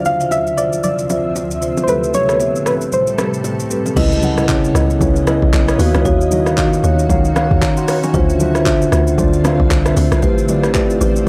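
A soft, round pluck melody with chorus opens this soulful, deep amapiano excerpt over a clean tine electric piano and a cloudy, evolving granular pad, as an overdriven house drum kit with handclaps, rim clicks and shaker, very quiet bright bongos and congas, and background marimba stabs through analog delay join in, until the pluck stops at 3.7 seconds and a hollow, bouncy log drum bass arrives with the drop at 4.0 seconds, the whole recording dry and gritty.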